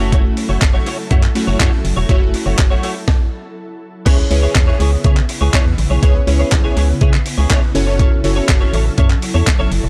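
This energetic, bittersweet dance-pop cut moves at 122 BPM in a straight 4/4, set in C# minor and tuned slightly sharp. An up-front breakbeat sampler-style kit drives it, with a thumpy kick, medium-tuned snare, handclaps, hi-hat and crash, all pitched up, compressed and tape-warm, as if re-recorded in a small room. Underneath, a hollow, organ-like FM bass with a percussive, decaying attack pumps against the kick, and an airy, ethereal pad hums in the background with a warbling, detuned vintage shimmer and its own reverb. A bright, twangy clean electric guitar plays a picked riff recorded direct, while glassy digital keys with a noise layer and filter sweep add chorused accompaniment until they drop out at 8.9 s. The harmony moves from F#m7 to C#m7 at 4.1 s after a brief stop at 3.1 s, then returns to F#m7, all captured dry with gritty cassette and transformer saturation.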